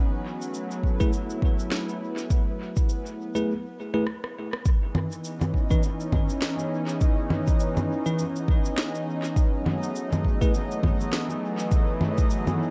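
A mellow, detuned analog pad with lush chorus opens this deep, meditative ambient dub excerpt in F# dorian at 102 BPM, alongside a bubbling, resonant stepped-filter texture, as the harmony moves from F#m11 to C#m9 at 4.7 seconds and back. An up-front electronic kit of deep kick, woody snare, rim click, cabasa and congas swings gently, its snare, rim, cabasa and congas trailing dub echo, while a bell-like tine electric piano places bright stabs carrying 12-bit sampler grit and a filter sweep. A break at 3.5 seconds and a drum fill lead into the second section, and the production stays dark and dry overall.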